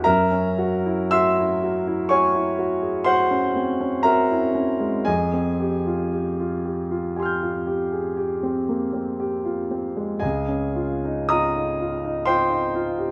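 A clear concert grand piano opens on a Gb9 chord, establishing a serene, luminous impressionist classical mood. The solo piano moves in a slow, rubato 5/4 at roughly 53-65 BPM, tuned to A4 = 438 Hz, and spans a range from Db2 up to G6. Its sound is up front and open, with deep bass and a long sustain that lets each harmony linger. The harmony drifts from Gb9 to Fmadd9 at 5.1 seconds and then settles on Dbadd9 at 10.2 seconds. Light reverb frames the piano in a gentle space across this brief passage cut from a longer piece.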